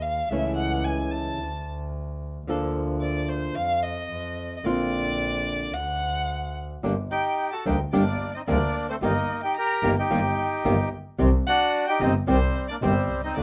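Heard in a moderate club reverb with each part up front, this tense, dramatic tango excerpt moves at 110 BPM in a rubato 4/4: it opens on an expressive, bowed violin solo full of vibrato and portamento over a boxy, period-style double bass with a nasal gut-string tone and acoustic fingerpicked flamenco guitar with audible finger squeak, before a dark, smooth bandoneon takes the melody at 7.1 s as the harmony settles into G harmonic minor.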